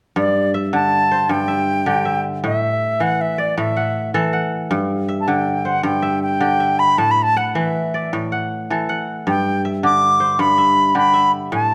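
A bright, reedy wooden flute carries the melody up front, its pure tone shaped by vibrato and a crisp attack as it sings high over the accompaniment. Beneath it, a kora spins ringing, fingerpicked arpeggios with a crisp, acoustic sound, also placed close to the listener. This joyful, West African traditional piece moves in a straight 12/8, and both instruments play together from 0.2 seconds through to 11.7 seconds. The harmony rocks gently between G and A chords, giving the short passage a sunny, open character. A moderate recital-hall reverb adds a natural sense of space around the pair, and the piece is clearly a fragment cut from a longer performance.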